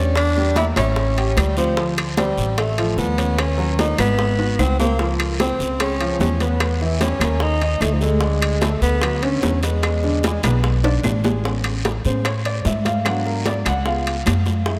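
Afro-Cuban jazz at a lively, danceable 149 BPM in 4/4, cut from a longer piece, with a close-miked tenor saxophone carrying the melody up front, its vibrato and soft attack giving it a warm voice, over pizzicato upright bass on woody steel strings and a natural-sounding baby grand piano comping through a lush chorus. Behind them sit ringing high-tuned congas, tight bongos and metal-shell timbales, joined by very quiet claves and a close, raspy guiro, with a drum fill at 4.4 seconds. The saxophone drops out at 11.0 seconds, and from 11.4 seconds the piano takes a solo, all of it bathed in a dreamy, reverb-soaked hall.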